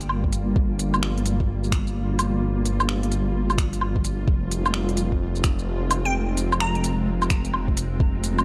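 A menacing, detuned saw bass sits up front with tube saturation and sidechain pumping, anchoring this rainy, wistful future garage excerpt at 129 BPM in G phrygian, swung on the 16ths and moving from Gm7 to Fm at 4.3 seconds. Above it, a blurred granular cloud pad holds mellow sustained chords through its own reverb and pumping, while an overdriven organic electronic kit of finger snaps, smooth hi-hat, shaker and woodblock rides up front beside a soft overdriven electronic kick. At 6.1 seconds a crystalline wavetable pluck enters briefly, bright and nasal, with chorus and tape echo, all set in a light digital ambience.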